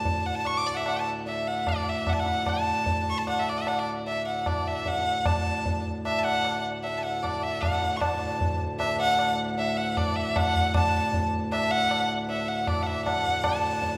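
An up-front, nasal violin with an airy bow and light vibrato carries a devotional, radiant Hindustani melody in seven over a reedy, breathing pedal-harmonium drone and high-tuned, short-ringing tabla entering at 0.1 seconds, the pace gradually speeding up through this hall-reverberant fragment cut from a longer piece.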